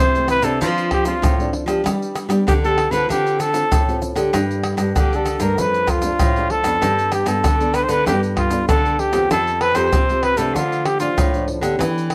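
Set in a moderate studio room, this festive, sunny samba-choro excerpt at 96 BPM features a dark, breathy trumpet up front, its jazz-style solo melody carrying light vibrato, scooped notes and a plate reverb, over a fingerpicked nylon-string guitar with fresh strings, a second nylon-string guitar playing a thumb-plucked bass line with audible finger squeak, and close, dry percussion of tube shaker, pandeiro, tamborim and tight surdo played with soft hands that enters at 0.2 seconds.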